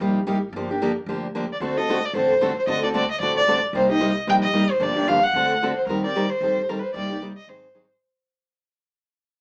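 A small-speaker sound with a wet studio reverb frames a band playing live in one room on this swinging, virtuosic excerpt of acoustic string swing in the jazz manouche style. The picked steel-string acoustic guitar, warm with fresh strings, sits up front comping over minor-key changes, while the upright bass plucks woody, thumpy gut-string notes in the background. At 1.5 s a bowed violin enters up front with a warm, expressive line full of vibrato and portamento, and the recording fades out from 5.9 s as the harmony moves into a new section.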